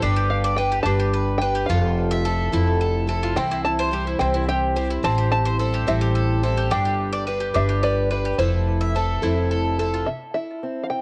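A home cassette recording with light studio reverb carries this uplifting, anthemic folk fragment in C major, moving in a straight 6/8 at 72 BPM. A bright, shimmering twelve-string guitar and an up-front mandolin picking double-string arpeggios with analog delay, both tape-coloured, sit over woody pizzicato upright bass. Meanwhile a mellow, plunky open-back banjo carries the fingerpicked melody from 0.3 seconds through a G, Fmaj7, C, Am7 progression. Around 10.1 seconds the twelve-string, mandolin and bass drop out, and a fingerpicked archtop guitar with audible finger squeak joins the banjo.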